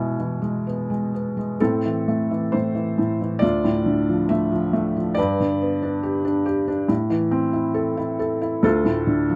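Dark and melancholic, this short excerpt from a longer classical piece features a solo felt-muted upright piano, soft, intimate and close, playing a lyrical rubato line in A minor at around 63-70 BPM in 4/4, moving through E, Am, Dm and G chords over its 9.4 seconds in light reverb.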